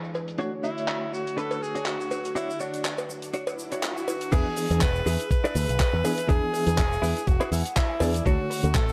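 Light reverb and a low-pass filter frame this groovy, feel-good nu-disco excerpt at 122 BPM with a 16th-note swing. A reedy electric piano with fast tremolo and a lush phased string machine pump alongside a chorused, gritty clean guitar riff, over damped 70s drums, handclaps, shaker and cowbell. A bright, close-miked tenor saxophone carries the melody with vibrato and dub echo from 0.6 seconds, while a filter sweep on the guitar and a background swell lead to the drop at 4.3 seconds. There a thumpy electronic kick and a punchy, envelope-filtered picked bass arrive up front, and the chords move from Dmaj7 to E7 before a guitar fill.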